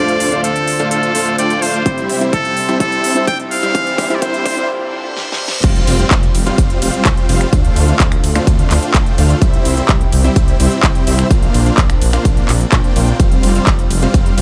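Euphoric and anthemic, this festival progressive house excerpt, cut from a longer piece, moves from a build-up into a drop in straight 4/4. A nasal, brilliant trumpet with a straight mute carries the melody up front with pop-style vibrato. Beneath it sits a dark, mellow concert grand, both carrying vintage 12-bit sampler grit and dub echo, while a lush, warbling unison pad with chorus and a huge, airy supersaw riff with a low-pass filter pump under sidechain throughout. A big-room kit with a huge snare, crisp hats, claps, snaps and cymbals plays drum fills, and a punchy, tape-warm electronic kick joins at 1.9 seconds. The trumpet stops at 4.7 seconds for a short break, filled by a very quiet reverse cymbal that leads into an impact, part of a faint layer of riser, reverse cymbal and impact effects. At 5.6 seconds the drop lands with a menacing, beating detuned saw bass, saturated and thick, over a Dm7–C–Bbadd9–Fsus2 cycle, all in light reverb.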